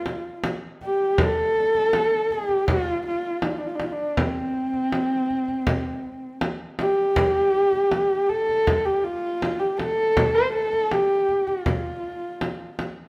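A straight 4/4 pulse at 80 BPM gives this piece of traditional Mongolian folk music a galloping, vast feel. It is cut from a longer performance, set in an F gong mode and tuned to A4 = 441 Hz. A single dark horsehead fiddle carries the melody from 0.0 s, bowed on horsehair strings between C4 and C5, with a husky, nasal, woody tone, vibrato and portamento, placed up front. A deep frame drum joins at 0.1 s, played with hard hands; its large acoustic body sounds compressed and saturated, also close and forward. The two players perform live in one large studio room, and a moderate reverb of about 1.0 s lends the space a sense of breadth as the music moves from a brief opening passage into a longer second section at 1.2 s.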